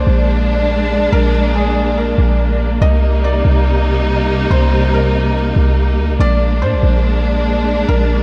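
A dreamy mix soaked in plate reverb opens this melancholic, spacious fragment of atmospheric cloud-rap at 142 BPM in a half-time 4/4 feel, moving from Bb7 to Cm7 at 2.8 seconds and back to Bb7 at 6.2 seconds. Up front, a deep, boomy 808-style bass with a sine core and a noise layer carries the low end beside a dark, lush symphonic string section holding bowed chords with expressive vibrato. In the background, a felt-muted upright piano plays a soft, intimate melody through tape echo, its thin felt and audible action noise adding a hushed texture.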